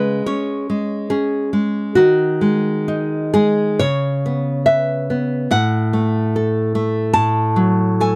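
Warm and nostalgic, this brief excerpt of a romantic solo classical guitar piece moves in a flexible rubato at around 59-74 BPM in 4/4. A bright, full-bodied nylon-string guitar, fingerpicked and up front, plays alone throughout the 8.2 seconds, ranging from A2 to A5 over chords that pass from C#5 through G#5/D# and C#m7 to F#m/A. The dry, close sound has the feel of a 1970s studio, with a moderate touch of booth ambience.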